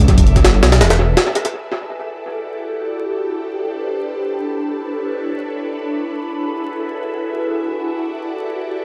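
The recording sits in a spring-reverb space thick with digital ambience, echo and vinyl crackle, giving this dark, atmospheric drum and bass and jungle fragment in E minor a haunted, dusty character. It moves in free time and opens on a drop, where a compressed, pitched-up sampler-style jungle kit with a thumpy kick, high-tuned snare and hi-hat punches up front with tape-tinged grit, a large-room tone and analog delay. Beneath it, a deep, rumbling detuned sawtooth bass with a beating low end holds the bottom until 1.2 seconds, and the drums fall away at 1.5 seconds after a brief break. An ethereal, airy pad of detuned sawtooth and triangle layers with a noise wash carries sustained chords throughout, its slow attack and long release softened by ensemble chorus, phaser, built-in reverb and a vintage 12-bit sampler grain. Once the beat drops out, the pad floats alone through a lush minor-eleventh progression of Em11, Am11, Bm11 and F#m11 before circling back to Em11.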